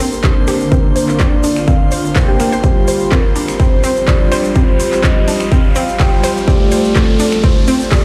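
A punchy, overdriven electronic kick drum drives this dreamy progressive house build-up at 125 BPM, entering at 0.2 s beneath an overdriven deep house kit of metallic hats, handclaps and finger snaps, a grainy egg shaker, a soft octave-layered synth lead with chorus, phaser and vibrato, a detuned analog pluck playing arpeggios, dark, mellow baby grand piano stabs, a shimmering, ethereal ambient pad that pumps to the kick, and a very quiet glassy texture of drifting overtones, while filter sweeps run across the pluck, piano and pad and a background riser joins at 0.9 s, all in a large studio reverb over chords moving from Bbadd9/D to Fsus2 to Dm.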